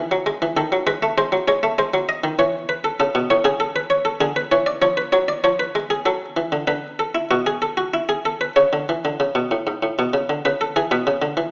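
A solo buff-stop harpsichord opens this serious, driving baroque-style two-part invention in three, its plucked, muted, lute-like tone sitting dry and up front in the French manner. The short cut from a longer piece moves through darkened, diminished harmonies before brightening at 6.7 s and settling onto a new passage at 10.4 s. A moderate recital-hall reverb surrounds the instrument, while the overall sound carries a thin AM-radio quality.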